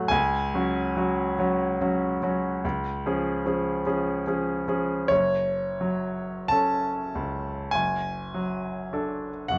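A slow, rubato 4/4 pulse drifting between 41 and 53 BPM carries this melancholic, mournful romantic nocturne for solo grand piano, cut from a longer piece. The brilliant, intimate piano sits up front with audible action noise, moving from C#sus4 to C# before shifting to F#m at 5.1 seconds and then D/F#, spanning F#1 to A5. A moderate large-studio reverb and a dark, warm production frame the mournful mood.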